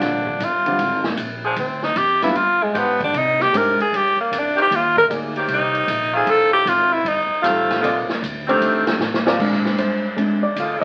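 The sound is that of a very old 78 rpm record, with vinyl crackle, a dull top end and a wet club reverb around the band. This joyful, brassy big band swing moves at 154 BPM in a swung 4/4, set in Bb mixolydian and cut from a longer piece. A clear, punchy tenor saxophone takes the solo up front, forceful and smooth on top, with light vibrato and scooped notes in a jazz style. The saxophone section enters at 1.4 seconds with sustained, vintage-sounding chords of its own light vibrato, while a grand piano accompanies underneath. A woody, thumpy pizzicato upright bass and a boomy-kicked drum kit with crash, ride, hi-hat and a medium-tuned snare keep the swing going, and the drums play a fill at 9.0 seconds. From 9.4 seconds the warm piano takes a brief solo as the changes return to Bb7.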